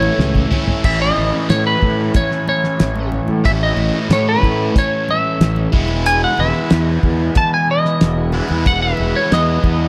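A straight 4/4 pulse at 92 BPM drives this hazy, hypnotic psychedelic rock excerpt, opening with a drum fill in the first 0.8 seconds on a cloth-damped, thuddy kit whose fat snare, tight kick and dark cymbals sit dry and rolled-off up top. A fuzz fingered electric bass, overdriven and punchy, holds the low end up front while a cranked stack guitar, bright and double-tracked, picks an overdriven riff coloured by phaser. Over them, a clean lap steel guitar played with fingerpicks and slide carries the melody in a dark, up-front voice trailed by tape echo. A vintage combo organ with heavy, reedy vibrato holds sustained chords in the background, and very quiet congas with a thick, medium-tuned skin add soft percussion. The harmony rests on A before moving to E at 5.7 seconds, all inside a small room ambience.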